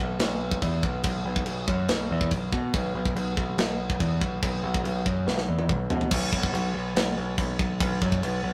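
Heavy metal in a straight 4/4, heavy and relentless, heard in a short passage cut from a longer piece. A growling picked electric bass, bright and overdriven, sits up front and moves between B1 and B2. A tight acoustic drum kit joins at 0.2 seconds, mid-forward with a medium-tuned snare, a tight kick, toms, crash and china cymbals, and a rolled-off top end. A drum fill runs from 5.3 seconds and leads into a new section at 6.1 seconds. The sound is rough, like a rehearsal room, with light reverb and a saturated glow.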